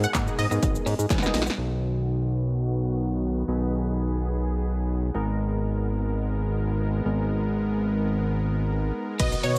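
A fat, saturated analog bass pumps up front through this carefree, upbeat 126 BPM dance-pop excerpt, beneath round, chorused analog keys and a smooth, airy supersaw holding G#madd9 and B chords, while a punchy, tape-tinged analog drum machine with a fill at 1.1 seconds, a bright, phased unison pluck, a clean, very quiet twelve-string electric guitar and distant group handclaps fill the opening drop, the drums and guitar halting at 1.6 seconds for a long filter sweep before returning with the pluck at 9.2 seconds.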